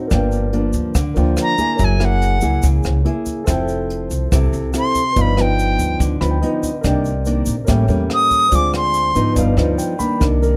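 An airy, reedy silver concert flute carries the melody in this smooth, wistful bossa nova excerpt, entering at 1.4 seconds up front with vibrato and tongued notes high in its range. Beneath it, a thumb-plucked nylon-string guitar with fresh strings gives a warm, classical accompaniment, and a woody pizzicato upright bass sits close and prominent. A jazz kit played with brushes adds hi-hat, rim clicks and a boomy kick, while a grainy tube shaker glints quietly in the background. A dark, mellow grand piano with long sustain stays low in the mix and steps forward with short fills at 6.0 and 9.4 seconds. The harmony moves through rich jazz chords such as Gm7, Fmaj7, Cm9 and A7b9 at a straight 143 BPM in 4/4, captured with close, detailed microphones and little reverb.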